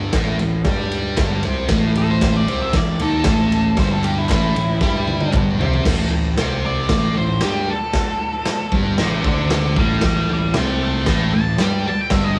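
A thick, double-tracked fuzz guitar riff drives this swaggering, gritty garage rock excerpt in A minor at 115 BPM, backed by overdriven fuzz bass, a saturated, punchy drum kit in a bright stone room with a fill from 4.8 to 5.9 seconds, very quiet crisp group handclaps, and a dark octave-fuzz lead guitar that enters at 2.0 seconds and takes a solo from 5.9 seconds, all with light reverb and the raw feel of a home cassette recording.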